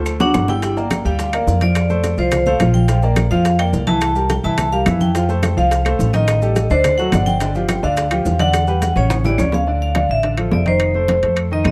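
Danceable and passionate, this short salsa excerpt is led by a bright, metallic vibraphone whose ringing tone carries a slow motor vibrato and a touch of tape echo. A clear, natural baby grand piano supplies the accompaniment, while a dark, thumpy pizzicato upright bass with steel strings sits up front. Behind them, warm, damped, compressed congas, tight high-tuned bongos, woody claves and grainy, mellow maracas sit in the background, while metal-shell timbales come through close and dry. A drum fill from 8.5 s leads into a new section at 9.7 s, where the bongos and maracas fall away. The close, detailed miking and very little reverb keep the band sounding immediate and crisp.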